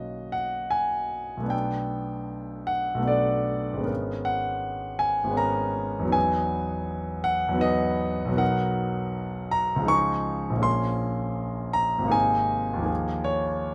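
Loose, rubato triple time with uneven beats carries this hazy, serene piece of impressionist classical music for a solo grand piano, its clear, intimate tone placed up front with audible action noise and light reverb as lush chords such as Bmaj9, G#m11 and Emaj9 drift across a span from G#1 to Db6 in a fragment cut from a longer piece.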